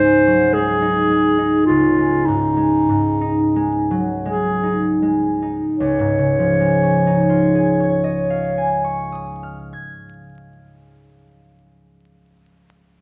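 A soft-attacked, distant clarinet sings a warm melody over a ringing, fingerpicked concert harp in this luminous, dreamy impressionist classical duo, moving with rubato in three and slowing through its opening before the harmony shifts from Dbsus2 to Dbadd9 at 5.8 seconds; the clarinet falls silent at 8.9 seconds and the harp rings on alone until 11.8 seconds, set in a wet recital-hall reverb with vinyl crackle.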